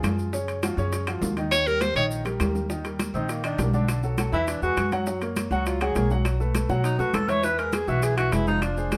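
A clear tenor saxophone with vibrato steps up front for a brief phrase at 1.5 s, and from 3.1 s a breathy, whispered tenor saxophone carries on with subtone, scooped notes and a roomy, intimate feel in this sunny, lively Afro-Cuban jazz fragment cut from a longer piece. Underneath, a dark, thumpy pizzicato upright bass on gut strings sits up front beside a warm concert grand piano with audible action noise and deep bass. Bright, high-tuned congas, round low-tuned bongos, ringing metal-shell timbales, woody claves and grainy maracas fill out the percussion, with two drum fills and a moderate studio reverb.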